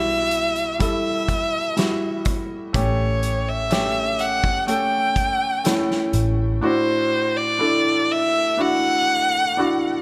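A straight 4/4 pulse at a slow 62 BPM carries this hopeful, emotional pop ballad, a fragment cut from a longer piece and tuned to A4 = 441 Hz. A loose indie acoustic drum kit enters at 0.3 s with hi-hat, a punchy kick and a fat snare, its sound roomy with a rolled-off top. A vintage fingered electric bass, dark, amped and foam-muted with a round low end, holds the bottom between A1 and B1 until 6.6 s, and the drums drop out shortly before it. A clear, natural baby grand piano plays the accompaniment from A2 to A4 throughout, moving through Emadd9/B, A7 and Dadd9. Up front, a single bowed violin sings the melody between C5 and G5 with a rich, nasal yet focused tone, a smooth top and vibrato, all set in light studio reverb.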